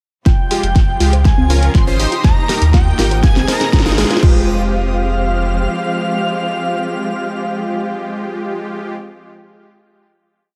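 A lightly reverberant, emotional and driving progressive house piece at 121 BPM in F minor builds from 0.3 to 4.2 seconds. In that build, a pop drum kit plays a fill with a punchy four-on-the-floor kick, crash, fat snare and hats, and a deep, pumping saturated sub bass moves in a dotted rhythm beneath soft, round pluck arpeggios under a filter sweep. Off-beat supersaw stabs and a muted, veiled string section hold the chords, while a very quiet riser and a reversed, granular high swell fill out the build. Over it all, a thick, detuned sawtooth lead with 12-bit grit carries the motif, doubled by an airy, phased second lead, and the music settles onto a final Fmadd9 chord from 4.2 seconds.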